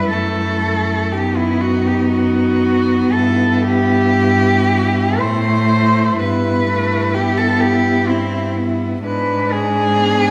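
Classical and lyrical, this yearning, solemn passage for cello quartet moves in a rubato 3/4 at roughly 53-64 BPM in E minor, a short stretch cut from a longer work in which all four bowed cellos sound together throughout its 10.3 seconds. The melody cello sings with rich, smooth vibrato up front, while a second line and an accompanying cello add even, bowed voices beneath it, and the bass cello carries a warm, intimate tone with light vibrato, soft attacks and an airy bow sitting close. A wet concert hall reverb surrounds the ensemble as the harmony passes from B7/F# through Em/G and Am to a closing G#dim.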